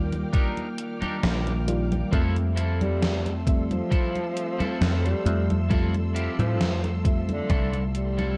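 A woozy, nostalgic vaporwave fragment heard through cassette-tape haze and digital ambience, cut from a longer piece and fading out from 6.9 seconds. A mellow FM electric piano lays down round, dark chords drenched in lush chorus and tape echo, moving from Ebmaj7 to Fmaj7, while a silky, warbling string machine sits in the background with slow-swelling sustained tones and ensemble chorus. Up front, a dry thumbed slap bass sounds punchy and foam-muted, alongside a thumpy, overdriven electronic kick and a gated 80s digital drum machine whose congas, hi-hat and gated-reverb snare carry a tape-warm, small-room character. A clean, scooped electric guitar riff enters just after the start with analog chorus and tape echo. At 2.8 seconds a distant, roomy tenor saxophone takes the melody with vibrato, roughened by vintage 12-bit sampler grit and trailed by tape echo.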